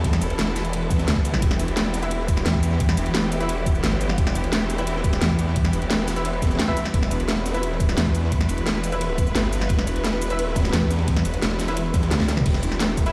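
Played through a big sound system in a bare room with large studio reverb, this aggressive, mechanical dark technical drum and bass drop at 174 BPM in E minor is driven by an up-front growling, wobbling bass with overdrive, chorus and sidechain pumping, a knocking electronic kick, and a dubstep kit with a huge snare and metallic hats, with a gritty breakbeat kit with dark cymbals in the background, while a distant, lush bowed string section holds sustained chords and a nasal, punchy orchestra-hit-like synth stab with digital delay enters at 2.0 s, before a drum fill at 12.1 s closes this cut from a longer piece.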